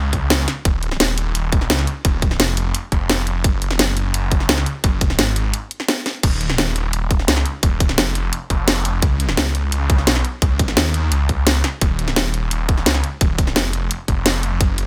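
The sound is dry and close, with every part pushed up front in the mix. This is a short cut from a longer piece of dark, technical drum and bass, tense and aggressive in mood, moving in a straight four-beat feel. A growling sawtooth bass holds the low end from the opening second, its detuned unison layers, sine weight and moving notch giving it a snarl, while distortion and compression keep its fast-attack, sustained tones biting. An overdriven electronic kick lands tight and hard, layered with a produced kit whose cracking snare, hi-hat and crash cymbal carry a touch of studio reverb. A brief break between 5.5 and 6.2 seconds interrupts the drive before the full assault returns to the end.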